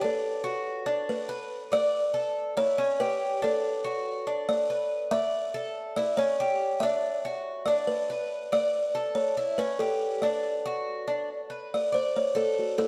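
A buzzing, woody kalimba carries the melody over metallic, double-strung Cuban tres arpeggios in this sunny, relaxed Latin excerpt. Both parts sit up front yet sound heard from further back in a room bathed in a wet plate reverb, with a kalimba solo arriving at 11.3 seconds.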